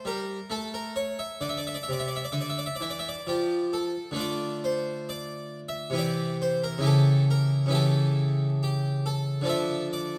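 A solo harpsichord opens on a G minor chord, then settles into D minor at 1.4 seconds in this radiant, flowing baroque-style suite movement, taken from a longer piece and moving at 67 BPM in 3/4 with a free, rubato feel. The French-style instrument, with three sets of strings and tuned to A4 = 438 Hz, sounds brilliant and full, its plucked tone held up front by close, detailed miking within a moderate recital hall reverb. A new section from 4.2 seconds passes through C and A7/C# before returning to D minor near the 10.2-second close.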